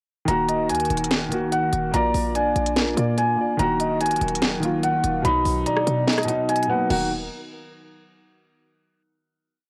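From 0.3 seconds a felt-muted upright piano leads this short, melancholic and eerie trap piece in Eb harmonic minor, its soft, intimate looping melody carrying audible action noise and a vintage cassette grain. Beneath it a dark grand piano plays worn, spread rhythmic chords with long sustain, while an airy, breathy pad with chorus hangs in the background, and a soft octave-layered synth lead joins at 0.5 seconds with a sparse, round counter-melody colored by chorus, tremolo, vibrato, plate reverb and analog delay. The beat moves at 145 BPM in a half-time feel: an up-front electronic trap kit with a sharp snare, rim clicks, crash cymbal and crisp hi-hats in fast rolls, also tinted by tape, sits over a punchy 808-style bass that slides between long sub-bass notes. The chords cycle Ebm, Bb, Ebm and B across a single hook, and the kick drops out at 6.1 seconds before the piece settles on a final Ebm chord from 6.9 seconds. 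The whole recording has the lo-fi character of a home cassette recording in a booth, with both pianos and the synth lead repeating like a sampled loop.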